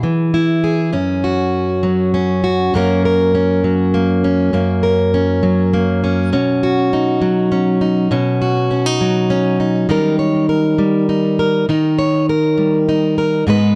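A plugged-in steel-string acoustic guitar, fingerpicked and up front with a warm concert tone and digital delay, plays alone through this uplifting, hopeful folk piece in 3/4 at 101 BPM, moving from E through F#, Badd9 and D# in a dark, dry production that is cut from a longer work and ends at 13.8 seconds.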